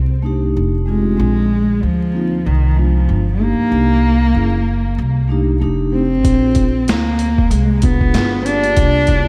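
A light small-room reverb and a layer of vinyl crackle frame this cool, nocturnal jazz-hop excerpt, cut from a longer hip hop piece, where a dark, bowed solo cello carries the melody up front with vibrato and a touch of delay over a woody pizzicato upright bass. A mellow vibraphone played with soft mallets sits lower in the mix from 0.2 seconds, its ringing, metallic tone shimmering with slow motor vibrato through shifting minor and extended chords. At 6.2 seconds a gritty, pitched-down boom bap drum kit arrives with a thumpy kick, a high-tuned snare and hi-hat, swinging the groove.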